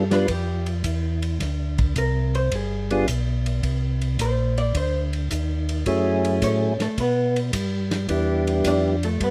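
Soul jazz organ trio with a greasy, bluesy mood and a swung four-beat feel, cut from a longer piece. A percussive tonewheel organ carries the melody up front, its mellow, round tone marked by third-harmonic percussion, key click, chorus vibrato and a slow rotary speaker. A vintage hollow-body electric guitar, dark, clean, picked and compressed, plays throughout and is featured as a solo across the full 9.3 seconds. Underneath, a second tonewheel organ handles the bass line with a smooth sound, key click and chorus vibrato from a stationary speaker. A dry, muffled, lo-fi acoustic drum kit enters at 0.1 seconds with hi-hat, ride, snare and a tight kick, its dark cymbals and rolled-off top keeping it warm. The harmony moves through chords such as G7, Cm9 and Em7, the band is tuned to A4 = 437 Hz, and light reverb adds a touch of space.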